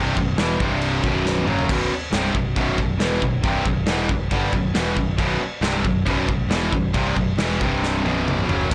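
Relentless and heavy, this short heavy metal excerpt at 137 BPM drives straight 4/4 riffs from a tight, double-tracked distorted guitar up front, backed by two bright, compressed distorted guitars and a growly picked bass in the background. A punchy big rock kit of kick, snare, toms and crash enters at 0.2 seconds, with fills around 1.3 and 7.8 seconds. It is all in a blown-out, overdriven recording with light studio reverb over power chords on B and C.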